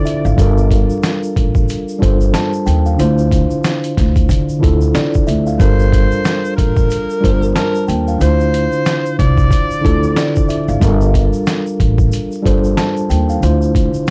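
A swung boom-bap groove at 92 BPM in 4/4 rides on a compressed, pitched-down sampler-style drum kit with a thumpy kick and snare, a faint grainy tube shaker, and a woody pizzicato upright bass colored by transformer saturation. An up-front, mellow tine electric piano on cassette tape alternates between Gm7 and Dm7, and from 5.6 to 10.3 seconds a whispered, breathy tenor saxophone solo with vibrato and tape echo drifts over the top. The reflective, moody hip hop cut has a dry, gritty hardware sound with vinyl crackle.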